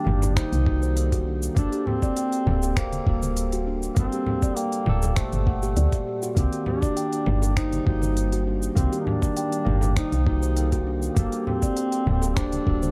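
A straight 4/4 groove at 100 BPM, built on a gritty, overdriven electronic kick, a woody, round FM bass pumping up front, soft-handed congas and bongos in the background, and smooth electronic snaps, hi-hat and shaker, carries this mystical, earthy organic downtempo excerpt in G harmonic minor, where a distant, roomy duduk with folk vibrato sings the melody through digital delay over a clean, pumping tine electric piano and ringing steel tongue drum arpeggios, moving between Cm9 and Gmadd9, while an airy, breathy wind-like noise layer drifts in very quietly at 7.7 seconds, all set in dark digital ambience.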